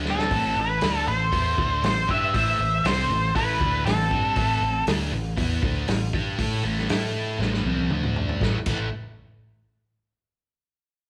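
The recording has the sound of a band playing live together in one large studio, with a moderate reverb around it, in this brooding, gritty cut from a longer piece of blues rock power-trio and southern rock. At 119 BPM in a straight 4/4 and A minor, a sludgy, double-tracked guitar sits up front with an overdriven riff, while a muted, fingered electric bass adds a round, foam-muted, amped low end. A vintage acoustic drum kit with a lo-fi, muffled character, dark cymbals, a tight kick and a rolled-off top opens on a fill and plays another from 7.4 to 8.4 seconds. Up front, a dark octave-fuzz lead guitar carries the melody until 4.8 seconds, joined by a quieter, bluesy overdriven second line in the background. The harmony rests on A minor before moving through D5 and landing on A5 as the music turns toward a new section.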